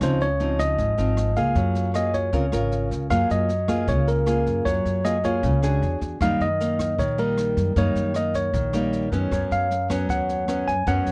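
A straight 4/4 bossa nova groove at 155 BPM drives this sophisticated, sunny excerpt, cut from a longer piece. It is kept by a jazz brush drum kit with a boomy kick, rim clicks and a medium-tuned snare, sitting low in the mix. The harmony opens in Db major on Dbmaj9, Gbmaj9 and Db6, then shifts to F# major at 3.1 seconds, moving through F#maj9, E9 and D#7 before landing on Badd9 at 9.3 seconds. A clean tine electric piano, heard through a combo amp and placed up front, carries the melody. Alongside it, a small-sounding nylon-string guitar with fresh strings is fingerpicked as accompaniment, with finger squeaks audible, while a woody pizzicato upright bass on steel strings holds down the low end. Light reverb touches a dry, close studio sound in a 1970s style.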